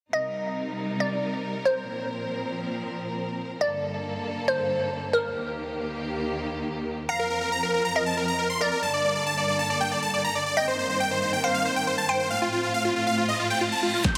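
Uplifting trance at 138 BPM with a bittersweet, soaring mood, opening on a rich, bowed symphonic string section holding sustained chords with sidechain pumping under a glassy, crystalline wavetable pluck with chorus and dub echo, both moving through a progression that begins on Cm7 and closes on F/A. At 7.1 seconds huge, lush supersaw chords take the melody, detuned and bright with sidechain pumping, a low-pass filter and dub echo, while a reverse cymbal and riser build from 13.4 seconds. The piece is cut from a longer one, and at 14.0 seconds a punchy layered kick, a tape-warm analog drum machine on snare and hi-hat, and an airy supersaw stab land together, all set in a huge ambient reverb.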